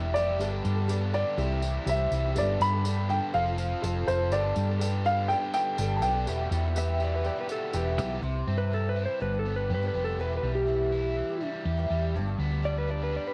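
A round, up-front hollow-body bass anchors this nostalgic, hopeful folk and heartland rock passage in G mixolydian, moving at a straight 123 BPM in 4/4. A mellow, dark baby grand piano carries the melody over a boxy, shimmering twelve-string acoustic guitar, a bright, double-tracked overdriven electric guitar riff, a woody, slightly detuned upright piano and a jingly vintage tambourine, while a clean, compressed lap steel adds a second line from 6.8 s and takes a slide solo at 8.2 s. The guitars and pianos carry a cassette tape tint, and moderate spring reverb gives this homemade recording, cut from a longer piece, a cozy sense of space as the chords drift from Gadd9 and C toward Em.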